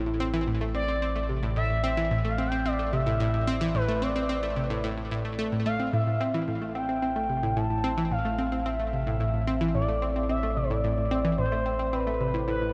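A deep, sine-toned sub bass opens this mysterious, cosmic stretch of ambient, sequencer-driven space music, holding a low A from 0.0 seconds. At 0.1 seconds an analog pluck riff arrives up front, bright and round, with a fast attack and decaying notes. Its detuned sawtooth and pulse waves, noise layer and wave-folded edge move through a filter sweep, thickened by chorus and echoed by delay. From 0.7 seconds a smooth, expressive portamento lead carries the melody high above, its mellow sawtooth tone shaped by a moving notch, soft attack, vibrato, chorus and delay. A huge, wet reverb with a long tail surrounds the music in a straight 4/4 pulse, and the recording is cut from a longer piece.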